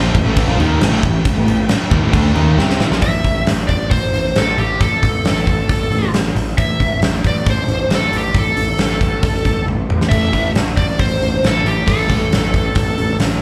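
A driving, aggressive hard rock excerpt in A minor at 136 BPM opens with three picked, overdriven guitars on a riff, a bright double-tracked one with slapback echo, a hollow-bodied semi-hollow and a very quiet, dark sludgy one, over a round, growling overdriven bass and a huge arena kit with a fat snare, punchy kick and bright cymbals, until a drum fill at 2.6 seconds brings in a smooth, up-front lead guitar melody with plate reverb and slapback echo at 3.0 seconds, while the semi-hollow and sludgy guitars return at 10.1 seconds, all heard as a live club gig through the venue's PA.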